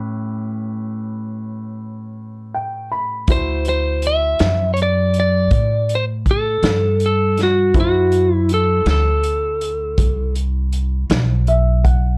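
An intimate grand piano with audible action noise opens this swaggering, laid-back slow blues excerpt in 12/8 at 54 BPM over A7, playing a fill from 2.2 s before a woody, growly pizzicato upright bass, a punchy small-room vintage drum kit with a rolled-off top, and a slightly broken-up, compressed electric lead guitar carrying the melody enter up front at 3.3 s on D7, the guitar dropping out at 10.3 s before the piano adds another fill at 11.1 s, all under light reverb in a dark, warm production.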